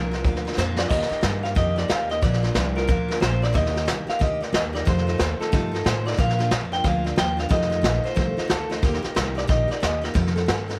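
Retro and rowdy, this short rockabilly excerpt swings at 182 BPM in 4/4, moving through Bb major with chords of Bb, Eb and F7. An electric guitar through a small old amp carries the melody with a twangy, slightly broken-up, lo-fi tone, its notes trailed by tape echo. Beneath it, a picked steel-string acoustic guitar lays down a bright, full-bodied dreadnought accompaniment, while an upright bass plucks a woody, thumpy line on gut strings. A soft brush drum kit sits up front yet sounds roomy and distant, with a punchy kick, a medium-tuned snare and a rolled-off top, playing crash, hi-hat, kick and snare. A quick drum fill from 0.6 to 0.9 seconds leads into the main section, and light reverb gives the whole band a sense of space.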